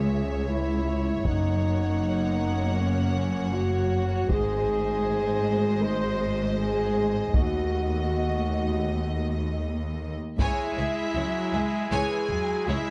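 A steady, straight 4/4 pulse at 79 BPM drives this cinematic, epic orchestral film-score excerpt in C# harmonic minor, dramatic in mood. The chords move from C#m through F#, G# and D#dim before returning to C#m at 10.4 seconds. A distant, woody violin section carries the melody high above a smooth, even second violin line, while a focused viola section and a clear cello section sit in the background and a rich, expressive double bass section anchors the low end. Up front, a vintage French horn section holds classical-style sustained chords. From 1.2 seconds a close, dry taiko ensemble joins, played with heavy sticks. At 10.4 seconds a bright, brassy pipe organ with a trumpet stop adds romantic sustained chords, all within light reverb and close, detailed miking.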